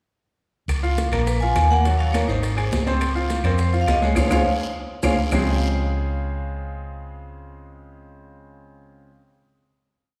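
A round, punchy hollow-body electric bass anchors this brief, sunny Afro-Cuban jazz piece in Db major at 208 BPM, playing a tumbao that anticipates the chords from 0.7 s to the close at 9.1 s, while a bright, vintage upright piano plays a montuno in octaves and a vibraphone with medium hard mallets and slow motor vibrato sings a dark, metallic, motif-based melody of call phrases until 5.1 s. Behind them, ringing congas, tight high-tuned bongos, metal-shell timbales with bell, a woody two-bar clave line, a raspy guiro and grainy maracas drive the groove until 5.4 s, with a drum fill and band accent from 4.2 s leading to a final chord held by bass and piano. The sound sits in a church or concert hall, washed in a lush, wet reverb.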